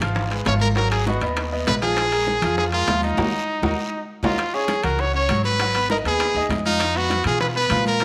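Salsa with a driving, passionate feel, this cut opens on bright grand piano chords and woody pizzicato upright bass over background congas, raspy guiro, and very quiet round bongos and ringing timbales, before a forceful, up-front trumpet with vibrato and scooped notes takes the melody at 0.5 seconds, the band striking an accent at 3.2 seconds capped by a drum fill, inside a moderate echo-chamber reverb.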